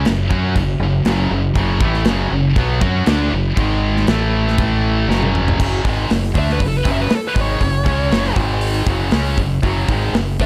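Epic and dark, this heavy metal excerpt moves at 119 BPM in a straight 4/4 feel in F# minor. A tight distorted guitar and a heavy high-gain guitar drive the riff alongside a crunchy overdriven guitar that sits double-tracked in the background and drops out at 5.6 seconds. Beneath them, a growling fingered electric bass with overdrive sits up front, while a polished modern studio drum kit with a punchy kick, a medium-tuned snare, hi-hat, toms and crash cymbal adds an airy small-room feel. A drum fill leads into a lead guitar solo from 5.6 seconds, with a bright high-gain lead guitar carrying the melody from 6.4 seconds, colored by tape echo. The chords move from F# minor through G#5 and A5 power chords before settling on F#5, all within a dark, warm studio production.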